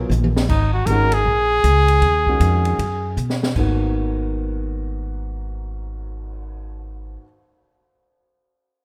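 A swung 4/4 pulse drives this cool, intense modal jazz fragment, where a close-miked trumpet with light vibrato carries the melody up front until 3.2 s, while an open acoustic drum kit with dark cymbals, a high-tuned snare and a boomy kick plays fills at 0.1 s and 3.2 s, a woody, thumpy pizzicato upright bass sits forward, and a clear concert grand piano with deep low notes provides accompaniment, heard in a rough home demo mix with light reverb and small room ambience.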